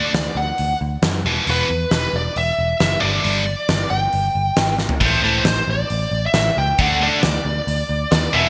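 Menacing and heavy, this short hard rock excerpt drives along at 136 BPM in a straight 4/4, cut from a longer piece. A bluesy overdriven lead guitar carries the melody, its dark, distorted tone up front and trailed by digital delay. Beneath it, a scooped high-gain guitar plays a bright, biting riff from the start, joined by a second scooped high-gain guitar on the same riff at 5.0 seconds. A picked electric bass with a round, foam-muted sound sits low, while a huge arena drum kit with a fat snare, punchy kick, hi-hat and toms booms through gated reverb and breaks into a fill at 4.8 seconds. The chords move from D through E5 and G5 to Am and D5, all set in a bright 1980s-style digital production with light studio reverb.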